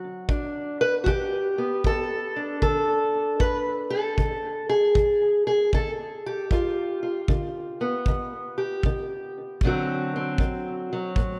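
Laid-back and rollicking, this short cut of acoustic country blues swings at 77 BPM in 4/4, as a dark, boxy parlour steel-string guitar fingerpicks the melody through an analog delay from the start, joined at 0.3 seconds by a tight studio-room kick drum played with brushes, both parts sitting up front while the harmony moves from G7 to D7 at 9.6 seconds inside a dreamy, lush hall reverb.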